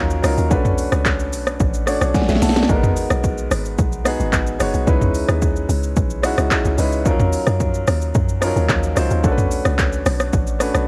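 A straight 4/4 amapiano groove at 110 BPM is driven by a deep house drum kit of punchy kick, fat snare, smooth hats, handclaps, rim click, shaker and toms, layered and overdriven with a cassette-tape grit, while a round, dark log drum bass with a fast attack and decaying tail sits beneath it. Up front, a clear concert grand piano with long sustain and audible action noise carries the soulful, deep chords, moving through D#m7, Bm7, G#m7 and C#m7 with its own cassette coloring, and it plays a fill from 1.6 seconds that the drums join with a fill of their own at 2.1 seconds. The dry, intimate home-cassette sound frames this short cut from a longer piece.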